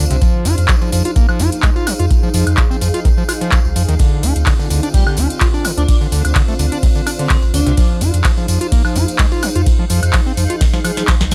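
A squelchy, overdriven acid bass riff drives this gritty acid house excerpt, riding over a deep up-front electronic kick, a round sine sub bass, a booming analog drum machine with metallic hats, handclaps, ride, snare and woodblock, a very quiet dusty sampler-style kit and a jingly, distant tambourine, while a warbling, nostalgic tape-like pad and a blurred granular cloud pad pump softly in the background, an airy, dreamy lead with phaser and vibrato drifts in at 4.9 seconds, and a drum fill closes at 10.6 seconds in a dry, hardware-grit mix.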